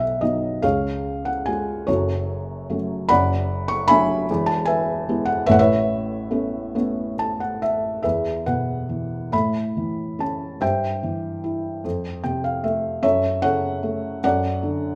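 A felt-muted upright piano plays alone, close and intimate, its dark, thick-felt tone carrying audible action noise in this calm, lyrical classical excerpt in A major. The rubato 6/8 pulse drifts at about 45-51 BPM in dotted quarters, with short piano fills at 6.7 and 11.8 seconds, and a new passage beginning at 8.0 seconds. A moderate recital-hall reverb gives the soft, mellow sound a gentle halo.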